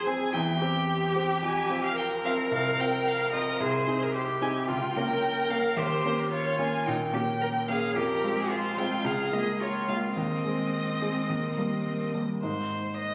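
In a straight, quick 4/4 at 110 BPM, this stormy, restless fragment of a classical-period movement for piano trio begins in F minor and turns to Ab major from 3.6 s. A rich, bowed solo violin carries the melody with smooth, even vibrato, sounding up front yet slightly distant. A single cello plays the second line in a clear, vibrato-tinged voice until it stops at 12.1 s. The baby grand piano supplies an intimate, natural accompaniment, placed close with audible action noise. The harmony moves through chords such as Bbm/Db, Eb7 and Fm before settling on Ab at 12.4 s. Captured on a phone in the room, the sound carries a moderate stage reverb, club ambience and compression.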